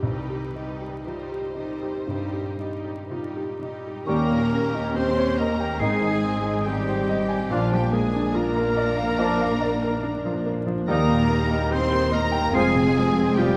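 A clear, up-front grand piano carries the melody in this tragic, passionate romantic movement for piano and orchestra, moving in rubato 4/4 at 58-73 BPM over C minor harmony, joined from the start by lush, expressive violins, a distant viola section, very quiet dark French horns and a soft cello bass. At 4.1 seconds the full orchestra enters: a hollow silver flute, a warm oboe, a mellow clarinet and bassoon, a very quiet trombone section holding chords, trumpet stabs and a clear double bass section, as the harmony moves through Eb7, Ab and Bb. A moderate scoring stage reverb and a layer of vinyl crackle give the excerpt a vintage cast.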